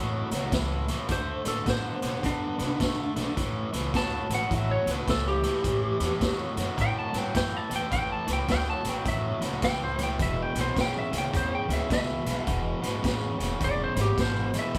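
Soulful and laid-back, this excerpt from a longer electric blues shuffle in A mixolydian swings at 105 BPM as a biting overdriven guitar riff and a woody, growly pizzicato upright bass open the groove over A, D5, A7 and E chords, a gritty, saturated garage drum kit with a punchy kick and medium-tuned snare joins up front at 0.3 s, and a twangy, slightly broken-up, compressed lead guitar takes the solo from 1.1 s, all captured as a band playing live in one room with light reverb.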